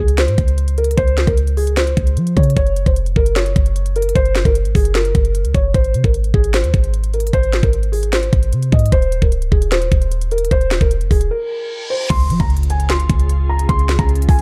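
Wistful and dreamy, this half-time trap excerpt in Db major at 151 BPM sets a soft, felt-muted upright piano melody, darkened by a low-pass filter and tape echo, over a deep, boomy 808-style bass and an up-front trap kit with knocking kick, sharp snare and crisp hats, until a break at 11.3 s brings an electronic reverse cymbal leading into an impact at 12.1 s, just after which a glassy, warbling FM pad with ensemble chorus and its own reverb enters at 12.3 s on sustained chords in an otherwise dry, dark mix.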